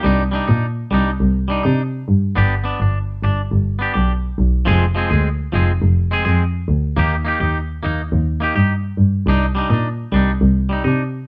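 This highlife guitar band recording, cut from a longer piece, has a warm, danceable mood at 104 BPM in a straight 4/4 and C minor. A twangy, clean electric guitar, picked and up front, plays the accompaniment in a middle register from the start to about 11.0 seconds. Beneath it, a bowed double bass, also up front and slightly louder, carries the bass line with a soft attack, expressive vibrato and gliding portamento. The harmony moves from Cmadd9 through G, Fm and Eb before returning to Cmadd9 at 9.3 seconds. A light reverb gives the sound a gentle sense of space.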